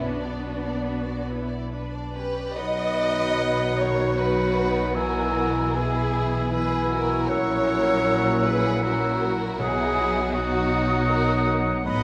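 Yearning and solemn, this classical orchestral passage, cut from a longer piece, unfolds in B major in a rubato 3/4 at roughly 69-82 BPM. It opens on strings: a rich violin section sings the melody with vibrato, a second violin section adds an expressive, soft-attack line, violas fill in the accompaniment in the background, and focused cellos join woody double basses on the bass, all bowed with a lush ensemble sound. At 2.6 s the harmony turns from B minor to B major as the winds and brass enter, with a bright oboe and a pure, hollow silver flute high above carrying second lines alongside a background clarinet, a dark, softly attacked bassoon in the accompaniment, and a tight, smooth-topped French horn section holding sustained chords. The chords travel through E over B and F#7 before settling back on B at 9.6 s, where a very quiet timpani on B sounds. A wet scoring-stage reverb with an RT60 of 2.0 s surrounds the ensemble.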